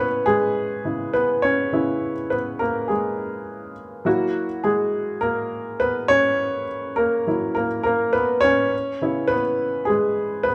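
In a moderate studio reverb that gives a live-room feel, this short soul fragment lets a solo baby grand piano sit up front, its intimate, natural tone carrying audible action noise and a short sustain as it moves from C#m7 to F#7 and back with a gentle swing, leaving a smooth, bittersweet mood.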